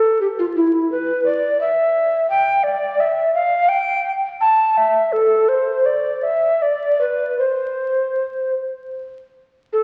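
A classical, baroque-style fantasia for unaccompanied tenor recorder, this short passage is cut from a longer piece and unfolds in a solemn, flowing mood. The pulse sits around 51-58 BPM, counted in dotted quarters in 6/8, though the rubato phrasing lets the time breathe freely in C major. The recorder plays alone from the first moment to 9.8 seconds, ranging from E4 to A5, with a hollow, woody, mellow tone, an airy edge and vibrato. Each tongued note begins with a chiff, and the instrument sits up front in the sound. Around it, a resonant concert hall reverb carries the notes into the space, while the surface crackle of a very old 78 rpm record gives the whole an aged, antique character.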